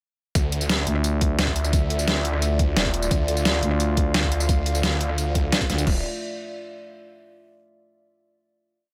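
A moody, nasal analog pad with chorus and sidechain pumping opens this tense, mechanical dark technical drum and bass piece at 174 BPM in D minor, and at 0.4 s the drop lands on a Dmadd9 chord with a snarling, detuned saw bass laden with distortion and tube saturation, a knocking, broken-beat electronic kick and a tight dubstep kit of deep snare, bright hats, rim, tambourine and crash, both drum parts pushed by overdrive, while a growling FM bass cuts in with chopped phrases answering the other bass from 0.9 s and again from 3.6 s, before a final chord closes the piece in light reverb.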